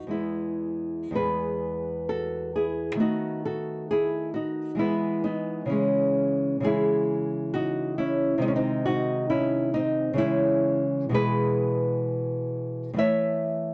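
A lone nylon-string guitar, small-sounding and up front with a thumb-plucked touch and the occasional finger squeak, opens this flowing, serene baroque-style classical dance in triple time. The playing breathes with a gentle rubato as the harmony moves from E through B7/D# and C#m before settling on A near 13.0 seconds, with the guitar spanning E2 to E5. A light reverb and a dark, warm production frame this brief excerpt cut from a longer piece.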